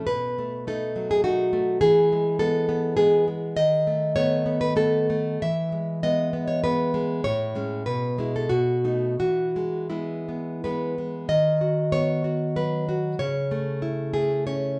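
A solo nylon-string guitar, bright and full-bodied, is fingerpicked up front in this nostalgic, tender romantic classical piece in E major, set in 3/4 with rubato that drifts between 78 and 104 BPM. The opening passage sways between B7 and E harmonies before touching on Amaj7, and at 11.3 seconds a new section begins over B/D# and A/C#. A moderate recital-hall reverb surrounds the guitar, and the recording is a short cut from a longer piece.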